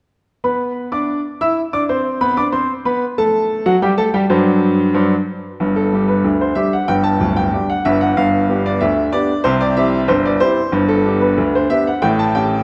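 A solo upright piano opens at 0.4 seconds with a cheerful, jaunty ragtime passage in G major, moving at 93 BPM in a straight 2/4. The instrument sounds clear and woody, with a smooth, vintage character and long sustain, placed up front in the mix and ranging from deep bass notes up into the high treble. It sits in a wet concert-hall reverb with a 1.9-second decay, giving the playing an airy, resonant space, and it is tuned to A4 = 438 Hz. The harmony opens on Cmaj9/B and D7, then shifts around 5.6 seconds into a second section that moves through G, C and back to G before landing on A7. This short section, cut from a longer piece, ends at 12.6 seconds.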